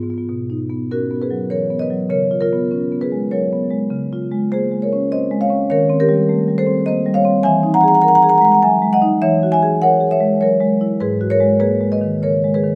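Flowing and reflective, this contemporary classical piece for solo marimba unfolds in a gentle triple metre with a freely breathing rubato feel. The marimba, played with medium hard mallets, sits up front and sounds dark and smooth, with a warm body across a range reaching from G#2 up to A#5. A moderate scoring-stage reverb with a 1.9-second tail lends the instrument a spacious, resonant halo. The harmony moves through lush extended chords, from Bmaj7 through C#6, C#maj7, D#6 and Emaj7 to F#9/E, before settling on G#m7 at 11.0 seconds. The excerpt presents a single section running from 0.3 to 12.8 seconds, cut from a longer work.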